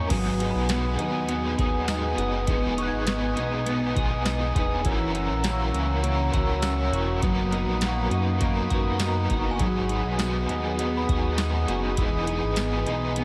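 An overdriven guitar with tremolo and chorus, a mellow tonewheel organ through a slow rotary speaker, and clean arpeggios on a semi-hollow electric guitar with chorus and tape echo open this haunting, melancholic dream pop excerpt in G# minor at 101 BPM, joined at 0.1 seconds by a dark, glossy chorused synth bass and a booming analog drum machine with a deep kick, crisp snare, metallic hats, tambourine and crash. From 0.5 seconds a faint, inharmonic FM chime rings and warbles in the background through chorus and tape echo, over chords moving from G#m7 through Emaj7, F#7 and Bmaj7/F#. The mix sits in a moderate scoring-stage reverb with a heavily compressed, radio-like sound, the drums up front.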